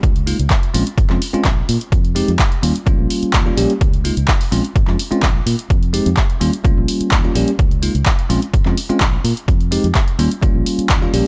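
Set in a digital ambience, this funky, sensual stretch of filtered disco house, cut from a longer piece, rides on an up-front, tape-warm electronic kick, while a punchy analog drum machine adds handclaps and sidechain-pumped hi-hats, a dark, round, foam-muted fingered electric bass pulses with sidechain pumping beneath, and a bell-like, clean tine electric piano, colored by phaser, vintage 12-bit sampler grit and its own sidechain pumping, cycles through Db69, Bbm7, Fm9 and Eb7.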